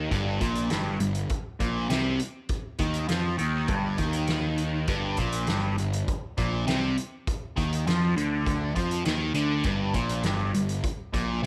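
Hypnotic and mysterious, this short psychedelic rock passage, cut from a longer piece, moves at 101 BPM in a straight 4/4 and sits on a G minor chord throughout. A dark, overdriven electric guitar carries the riff in a low register, picked and double-tracked, with a phaser colouring its tone, and it sits up front in the mix. Beneath it, a fuzz-laden picked electric bass holds the low end, its sound direct and amped with a warm overdriven grit. A soft-mallet drum kit plays hi-hat, kick and snare, giving a fat snare and punchy kick that still feel distant and roomy, as if caught in a studio room. Light reverb surrounds the parts, and all three play together across the roughly 11.5 seconds.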